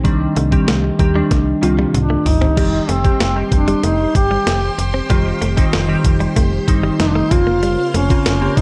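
A clean 12-bit drum machine sets a straight 95 BPM pulse in 4/4 with a thumpy kick, medium-tuned snare, hi-hat, toms and crash, and plays a fill leading into the section change at 2.6 seconds. Snappy, metallic FM bass and glassy digital keys with chorus fill out this romantic, nostalgic 1980s-style pop passage, while a compressed, clean electric guitar riff sits in the background with chorus and delay. At 2.0 seconds a mellow duduk enters up front with vibrato and delay, soon joined by a swirling string machine holding bright, phased chords as the harmony moves from C minor to Cm/F and Bbmadd9/F, all within light reverb and a dark, warm production.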